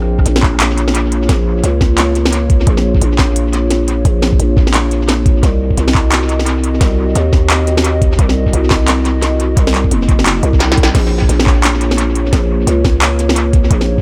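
A dark, detuned analog pad with chorus and sidechain pumping holds sustained chords over a growling, saturated 808-style bass from the opening of this tense, cinematic half-time drum and bass piece in Bb minor at 174 BPM, swung on the sixteenths. A gritty, pitched-down electronic kick and an up-front industrial kit, with clanging snare, crisp hats, handclaps and crash cymbal steeped in dub echo, arrive almost immediately, and a drum fill comes at 10.6 seconds. The harmony moves from Bbm to Cdim at 5.4 seconds and back to Bbm at 10.9 seconds, all within light digital ambience and an echo-heavy mix.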